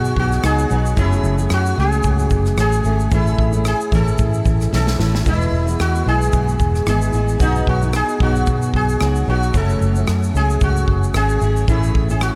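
A light sixteenth-note swing at 112 BPM in 4/4 sets an easy-going, sunny acoustic pop feel, carried by an airy, polished country drum kit with a punchy kick, rim click, shaker and snare, plus a drum fill at 4.7 seconds. A buzzing, shimmering sitar plays the melody through a diffuse ambient delay, over a double-tracked, full-bodied jumbo steel-string guitar fingerpicking the accompaniment and a dark, foam-muted, round vintage electric bass sitting up front. The chords move through B, F#madd9, A and E under light reverb in this short excerpt cut from a longer piece.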